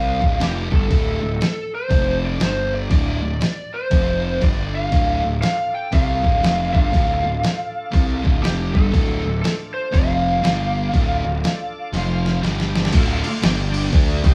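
Heavy and gritty, this cut from a longer blues rock and southern rock jam swings at 120 BPM in D minor. A thick, double-tracked fuzz guitar riffs over a growly, fuzzed picked bass and a muffled, pitched-down sampler-style drum kit with a thumpy kick sitting up front, while an overdriven lead guitar through a small cranked amp carries the melody with slapback echo. A shouting tonewheel organ with key click and slow rotary speaker enters at 4.9 seconds, just as the kick and snare return from a brief dropout, holding chords in the background, and a drum fill at 11.9 seconds leads into a short closing section, all played live in one room with a moderate large-studio reverb.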